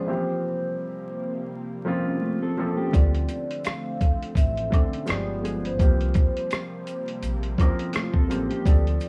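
This nostalgic, hazy lo-fi hip hop excerpt opens with a metallic, ringing vibraphone melody played with medium mallets and a slow motor vibrato, set close and dry over a soft, felt-muted upright piano that sits up front with short, intimate chords. Behind them, a lush, detuned sawtooth pad holds thick sustained harmony with a slow attack and long release, softened by chorus. A dark, clean electric guitar slips in briefly at 2.2 seconds with a fingered second line colored by analog chorus and delay. From 2.9 seconds the groove arrives: a compressed, gritty sampler-style drum kit with a thumpy kick, hi-hat and rim click leads the mix on a gently swung feel, joined by a woody pizzicato upright bass and a tube shaker and woodblock tucked into the background. The whole piece carries worn, warbling cassette tape character with vinyl crackle, pitch drift and light reverb.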